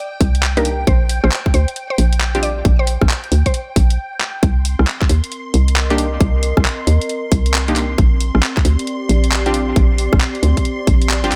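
A swung 135 BPM two-step UK garage groove in Bb major, bouncy and soulful, rides on a tight, up-front electronic kick, a garage kit of handclaps, bright hi-hats and rim clicks, and a hollow, knocking FM bass with tube saturation, while a woody mallet-like synth pluck sings a brief opening melody over silky string-machine chords with phaser and sidechain pumping, punchy sawtooth chord stabs with dub echo carry a filter sweep into a short break and drum fill at 4.2 seconds, and after the drop at 4.4 seconds a warbling, nostalgic lo-fi tape-like pad enters at 5.0 seconds, just ahead of the returning stabs, as the harmony moves between Cm7 and Bb69.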